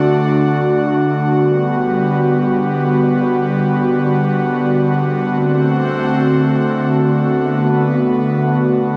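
A lush hall reverb surrounds a breathy, detuned pad with a noise layer, its chorus-thickened tones sitting up front with slow attacks and long releases. This floating, dreamy hip hop fragment in G major drifts in free time, the pad playing solo from 0.0 to 9.0 seconds in a soft middle register. It moves from D to Gmaj7 at 1.4 seconds and settles on D7 at 5.3 seconds.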